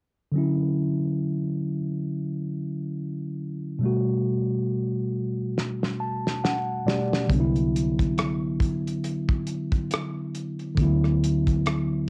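A mellow tine electric piano opens this relaxed, soulful neo-soul and R&B excerpt, its clean, direct tone sitting up front as it lays down lush extended chords in D major, moving from Dmaj9 to Gmaj9. The tempo is an unhurried 69 BPM in 4/4, with a gentle swing on the sixteenths that gives the groove a laid-back lilt. At 5.6 seconds a cloth-damped drum kit arrives with a fill alongside an electric piano fill, bringing a thuddy, fat snare, tight kick, rim clicks and hi-hat with a rolled-off top and the soft grain of cassette tape. A vintage muted fingered electric bass joins at 7.3 seconds, dark and round with a foam-muted, amped character, as the harmony shifts to Cmaj9#11 before settling on D69. Light reverb and the intimate feel of a home cassette recording lend the whole passage a cozy, lo-fi glow.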